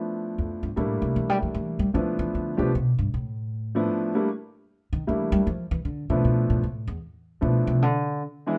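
Jazz piano trio music in a relaxed, playful swinging 3/4 at 153 BPM, centred on G mixolydian and cut from a longer piece. The upright bass carries a pizzicato solo from 0.4 to 8.2 seconds, woody and up front with steel-string bite. Alongside it, a warm baby grand piano with long sustain carries the melody over extended harmony such as G13, Ebmaj7#11 and Dm13, all in a moderate large-studio reverb.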